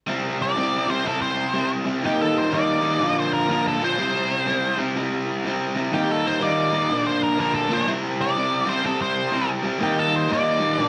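Swaggering and gritty, this short rock excerpt swings its eighth notes as a bright, double-tracked overdriven electric guitar picks out a low riff from 0.1 s, cycling through C, Eb and Bb. At 0.4 s a dark octave-fuzz lead guitar enters up front with a picked, distorted melody sitting higher in the register. The band sounds as if it is playing live together in one room, bathed in a lush large-studio reverb.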